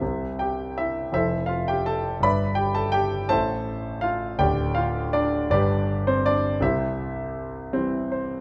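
This is lyrical classical solo piano, tender and warm, moving at a slow, rubato 54 BPM in 6/8 in C major. A single concert grand carries the whole passage, its worn tone sitting up front and present, with a deep bass reaching down to D1 and lines rising as high as B5. Notes decay quickly for a piano, giving the phrasing an intimate, close-at-hand feel, while a moderate reverb, like a scoring stage, lends a gentle sense of space. The harmony unfolds unhurriedly from C through F, G6, Am, Dm and G before settling back on C. Near the close, at 7.7 s, the piano adds a short fill that rounds off this fragment of a longer piece.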